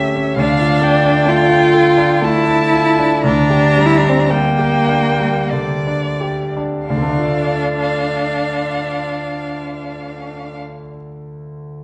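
Heard through worn, warbling cassette tape and a wet recital-hall reverb, this solemn, melancholic passage from a slow romantic piano-trio movement in D minor moves in rubato 3/4 at 42-70 BPM, slowing through its first 6.9 seconds as an intimate, up-front concert grand with audible action noise and deep bass accompanies, a clear, smoothly bowed cello enters at 0.4 seconds as a second line, and a rich violin carries the expressive melody with vibrato and portamento until 10.6 seconds.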